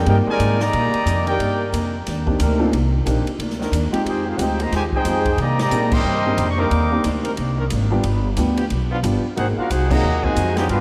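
Swinging at 181 BPM in C minor, this sultry big band excerpt sets a trumpet section on the melody in short bursts at 0.0, 4.1 and 9.4 seconds, shadowed by a clear trombone section's second line in the background, over a woody, growly upright bass up front, a dark, mellow grand piano, a very quiet boxy archtop guitar, a bright close-miked trombone section holding soft chords, and an airy drum kit with a punchy kick, all bathed in a vast, echoing cathedral reverb and punctuated by band accents at 5.9 and 9.9 seconds.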